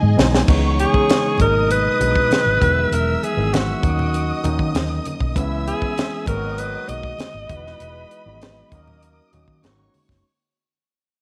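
Lush 1970s-style soul with a bittersweet, smooth mood, heard as a short cut from a longer piece that fades out after a brief drum fill in its opening half second. The tight funk kit sits up front, with a high-tuned snare, a tight kick, hi-hat and crash cymbal. A dark, round, foam-muted fingered bass is punchy beneath it, while very quiet, low-tuned congas add hard-handed hits from a close, dry position. A worn, slightly out-of-tune tine electric piano, lightly overdriven, comps over a bowed string section with vibrato and a smooth, focused top. From 0.8 seconds a breathy, vintage alto saxophone carries the melody with vibrato and tape echo, and at 5.4 seconds a dark horn section adds stabs in octave doubling over a repeating progression that ends on a suspended chord. Light reverb gives the whole a small-room ambience.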